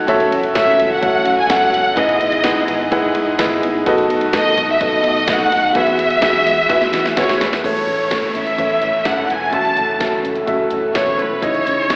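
Hopeful and uplifting, this short cut of piano-driven pop in E major moves at 127 BPM, led by a lush, vibrato-rich violin section up front over a woody upright piano with slapback echo, a fingerpicked jumbo acoustic guitar riff, a round, foam-muted bass in the background, very quiet bowed studio strings and a punchy, cracking house drum kit whose fill at 6.7 s gives way to a background downlifter at 7.6 s, all heard through a live venue PA, recital hall reverb and AM radio sound.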